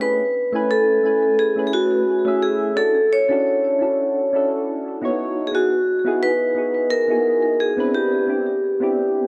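A ringing, metallic vibraphone struck with medium hard mallets, its motor off, carries the melody up front through analog delay, while soft, round electric-piano-like synth keys shimmer with chorus and phaser alongside, moving through Amaj9, Dmaj9, Emaj9 and Cmaj9 in this smooth, gently swung chillout excerpt, which is bathed in a moderate plate reverb and an echo-heavy mix.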